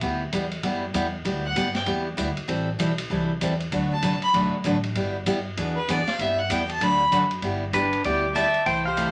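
A bright, picked dreadnought acoustic guitar, a woody pizzicato upright bass and a vintage drum kit with dark cymbals, a high-tuned snare and a punchy kick open this cheerful western swing excerpt together in G major at a swinging 194 BPM; a clear, nasal fiddle with light vibrato steps up front for a brief phrase at 1.4 seconds and returns at 3.9 seconds to carry its solo, before a clean, compressed pedal steel guitar with volume swells and slide takes the melody at 7.7 seconds, all in a wet studio ambience over changes such as G6, Am7, D6 and E7b9.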